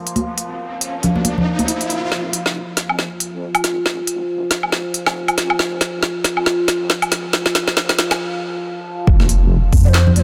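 Set in light reverb, this cavernous, dark deep dubstep excerpt in F minor moves at 138 BPM with a swung, half-time feel, opening on an evolving, resonant drone with moving overtones, an electronic riser, bright soft-handed congas and an up-front deep house kit of woody snare, smooth hats, handclaps and woodblock. At 2.1 seconds a detuned, sawtooth wobble bass enters on an F minor chord for a build-up with a drum fill and then a brief break. The drop at 9.1 seconds brings an impact, a layered deep electronic kick, the returning congas and, at the very end, a breathy, hollow shakuhachi melody with vibrato and chiff.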